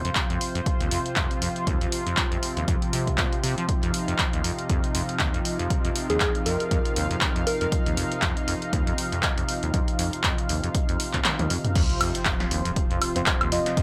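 With light reverb, this driving, trippy acid house excerpt swings on an up-front, punchy analog drum machine of crash, handclaps, hi-hat, snare, toms and woodblock plus an electronic kick that drops out for a fill at 11.3 seconds, while a squelchy, resonant saw bass riff with chorus and delay runs beneath a thick, detuned unison pad pumping to the sidechain, a round, keys-like FM lead warbles briefly from 6.1 seconds, and a very quiet sub drop from 11.8 seconds carries on beneath a dark, vintage chord stab at the close.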